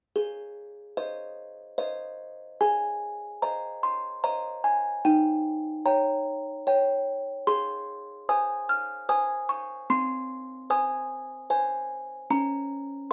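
A moderate studio reverb surrounds this short recording, which sounds captured live in a single room and is clearly cut from a longer piece. It is a tender, innocent classical lullaby written for music box, moving at an unhurried 74 BPM in a straight 3/4 in Ab major, tuned slightly low to A4 = 439 Hz. The solo music box sits up front with a delicate, tinkling, plucked tone and the fuller resonance of a large box, ranging from C4 up to F6. A brief opening phrase gives way at 2.6 seconds to a longer second section that carries on to the close at 13.1 seconds. The harmony rests on Ab, moves to Eb7, returns home, then passes through Ab/C before settling on Bbm/Db as the passage breaks off.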